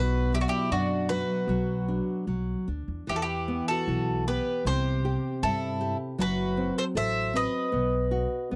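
Passionate and longing, this rubato fado-style ballad fragment sets a woody, double-strung mandolin melody up front over fingerpicked classical nylon-string guitar and dark pizzicato upright bass, while a shimmering, octave-doubled twelve-string acoustic guitar with audible finger squeak adds a boxy second line, captured in a dry, close 1970s-style studio sound with light reverb as the harmony shifts to new colours from 3.1 seconds.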